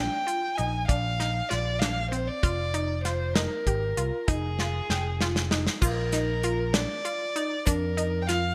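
Driving along in 11/8 at 195 BPM counted in eighths, this short cut from a longer progressive instrumental moves with a straight, intricate and bright feel over Bb and Fm chords. A woody, dark violin with vibrato and delay carries the melody over rounded sawtooth analog pluck arpeggios touched with chorus and a punchy, amped picked electric bass. A dry, damped 70s drum kit with gated reverb, dark cymbals and a tight kick comes in at 0.3 seconds and plays a fill from 4.6 seconds, and a grainy tube shaker joins in the background at 5.8 seconds, all set in a small room with crisp 1980s-style digital polish.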